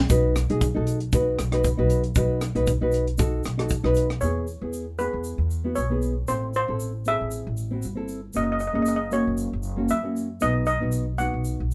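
A small room with a moderate, short reverb frames this sunny, carefree calypso clip, cut from a longer piece. At 116 BPM in a straight 4/4, a woody pizzicato upright bass and a thumb-plucked classical nylon-string guitar sit up front throughout, with the guitar's tone warm. A tight funk drum kit with a tight kick, hi-hat and rim click drives the opening until 4.2 seconds, while a grainy, bright egg shaker sits softly in the background the whole way through. At 4.2 seconds a metallic, shimmering steel pan takes the lead, struck with hard rubber sticks, sounding mid-forward and up front. Underneath, the harmony moves from B to E, then Am and F#, before returning to B.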